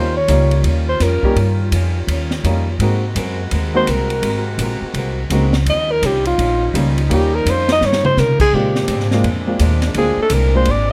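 Swinging and brassy, this big band swing passage features a breathy, mellow alto saxophone soloing up front with light vibrato and scooped notes, pausing after 1.6 seconds and returning at 3.8 seconds. Behind it, a clear baby grand piano, a woody, thumpy upright bass plucked on gut strings and a boxy, picked, ladder-braced acoustic guitar in the background keep the accompaniment going. A tight saxophone section holds soft-attack chords, and a polished drum kit with dark cymbals, a high-tuned snare and a punchy kick adds a fill at 7.8 seconds, all captured in a close, detailed sound with little reverb.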